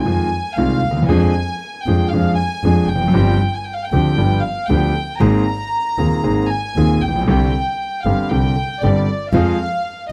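A bowed violin section with a reedy, gut-string period tone and light vibrato carries the featured line from the start of this passionate, nostalgic tango excerpt in C minor at 116 BPM with a rubato feel, joined at 0.1 seconds by a vintage-sounding concert grand with deep bass, placed up front in the accompaniment, and an intimate, airy, sul tasto bowed double bass, all in a dry, close 1970s-style studio sound as the harmony moves from Fm7 through G7sus4 and G7 to Abadd9 and Csus2 before settling on Fm.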